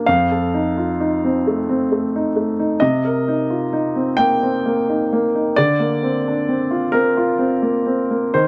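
Neoclassical minimalist piano in a melancholic, intimate mood, this short cut from a longer piece moves at a slow 44 BPM in 6/8 with a rubato feel. A solo baby grand piano, polished and up front, spans F2 to G5 across the whole 8.5 seconds, moving through F7, Cm7 and Bbadd9/D. The dry, close 1970s-style studio sound adds a touch of light reverb.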